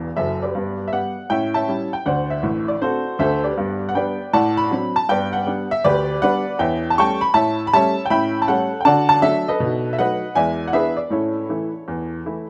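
A clear, woody upright piano, slightly detuned and up front, carries this playful, exuberant stride jazz piece alone, opening with a brief fill before settling into a swung 4/4 passage that ranges from F#1 to D6. The harmony moves through lively dominant chords such as A7, D7, B7 and E7, ending on A at 11.1 seconds. A moderate plate reverb and a rough home demo mix give the sound a homespun, reverberant character, and the passage is cut from a longer piece.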